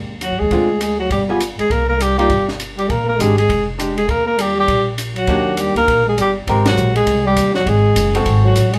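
A moderately reverberant large studio holds a small band playing live in one room, in a short cut from a longer piece of sophisticated, relaxed small-group swing and bop. Up front, a whispered alto saxophone with subtone and light vibrato carries the melody, with a mellow, smooth-topped trombone on a second line. A clean hollow-body archtop guitar supplies the chords over woody pizzicato upright bass and a dry, compact cocktail kit with dark cymbals, a high-tuned snare and punchy kick, before a break at 6.2 seconds and a band accent at 6.6 open the next section.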